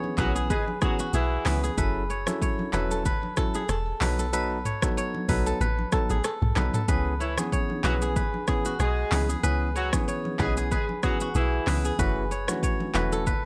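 Sultry and mellow, this afrobeats excerpt rides a swung groove from an electronic, tape-warm afro-pop drum kit with a deep kick, metallic hats, handclaps, rim clicks, shaker and toms, anchored by a round, dark, percussive log drum bass. An up-front, crisp, fingerpicked kora riff rings through a digital delay over a bright, barky tine electric piano and vintage congas played with hard hands in the background. A distant, roomy horn section adds a tight second line, briefly at the start and again from 7.2 to 11.8 seconds.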